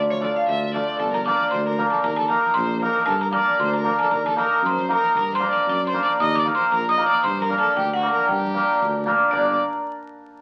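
A swung 2/4 pulse drives this bittersweet, restless fragment of a Balkan wedding-band tune, with a mellow, close-miked tuba anchoring the bass beneath a very quiet soft-mallet drum kit of boomy kick and fat snare. A woody, hard-mallet marimba carries the melody, a bright, focused violin with vibrato adds a second line, and an up-front hammered dulcimer shimmers and rings in accompaniment as the harmony rocks between G minor and E-flat. The whole band sits in a wet studio reverb and comes through the crackle of a very old 78 rpm record.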